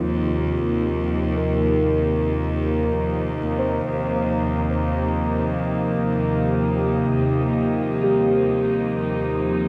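Soaked in a plate reverb, this dreamy, luminous ambient excerpt rests on a single held Eb chord. A warbly, nostalgic tape-like pad sits up front with sustained chords colored by chorus and phaser, while muted, felt-like synth keys play intimate, dark arpeggios through chorus and delay. Beneath them a bright, earthy cello section holds the bass with light vibrato, a mellow analog drone evolves at a barely audible level, and an airy, breathy wind-like noise texture drifts very quietly above.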